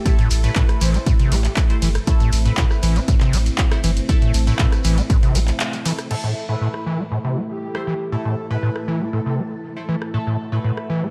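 A straight acid house groove opens this gritty, raw clip from a longer piece: a punchy, tape-warm electronic kick sits up front, with a punchy analog drum machine adding handclaps, hi-hat, ride, crash and rim clicks, and a grainy shekere tucked into the background. Driving it is an overdriven acid bass riff, squelchy and resonant with a distorted square-wave bite and filter sweeps, under a round sine sub bass that pumps against the kick. Nasal, band-passed sawtooth chord stabs flicker with phaser and tape echo over a lush string machine that holds mellow sustained chords, while a soft, breathy flute-like lead drifts in distantly with vibrato and chorus. The kick and sub bass fall away before a brief break and band accent at 5.6 seconds. From 6.1 seconds the string machine's filter sweeps as the acid bass and stabs carry on, and the airy lead returns at 7.5 seconds, all within a dark, warm mix of digital ambience.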